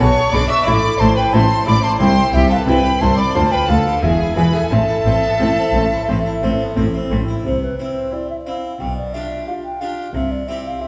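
A mellow, hollow concert flute leads this dramatic, driving baroque-style concerto excerpt, singing a pure melody with vibrato alongside a close, expressive violin section that carries its own melody, while a second, focused violin line moves beneath. A full French-style harpsichord and smooth violas in the background fill in the accompaniment, and clear, distant cellos and intense double basses, bowed with light vibrato, anchor the bass until 10.7 seconds. Heard from further back in a reverberant recital hall, the music moves into a new section in a major key at 7.5 seconds before the passage is cut off.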